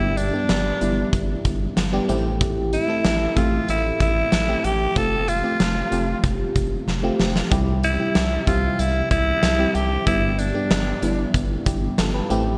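1980s-style pop at 94 BPM with a moody, nostalgic air, where a breathy, raspy alto saxophone carries the melody up front with vibrato, scooped notes and digital delay, over a glassy, bell-like FM electric piano treated with chorus and phaser, a round, deep analog bass and a huge arena drum kit with a fat snare, punchy kick and gated reverb that drops a fill at 6.9 seconds, all set in a lush hall and bright digital production as the chords move from G through Am7, Fadd9 and C back to G in this cut from a longer piece.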